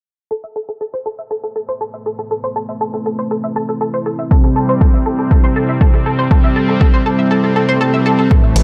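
This cinematic, melancholic melodic techno at 120 BPM in A minor opens at 0.3 s with round, detuned analog pluck arpeggios washed in chorus and tape echo under a filter sweep, soon joined by a deep, moody ambient pad holding sustained chords; at 4.3 s, as the harmony moves from Amadd9 to C, a brassy, warbling vintage pad adds up-front stabs and a punchy, overdriven kick arrives, while the pads and pluck carry sidechain pumping, and a very quiet electronic swell sounds just before a gritty, saturated synth bass and an overdriven hi-hat land at 8.6 s.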